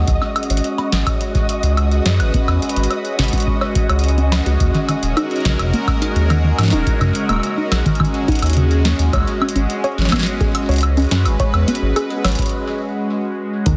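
A swirling, detuned analog pad opens this melancholic, cerebral IDM piece, its sustained chords colored by phaser, chorus, tremolo and a gritty vintage-sampler edge, over a round, sine-like sub bass sitting up front. A grainy, flickering texture hovers high in the background with its own reverb. Almost at once a nasal, lo-fi pluck adds arpeggios through chorus and tape echo, its warbling tone moving under a filter sweep. The beat pairs a deep electronic kick with a booming analog drum machine of crisp snare, metallic hats and woodblock, the latter sent through delay, both re-recorded in a large room. The harmony moves between C#7sus2 and D#m7 in a lush hall with a dense, heavily limited modern master, and a break arrives at 12.5 seconds before this fragment of a longer piece ends.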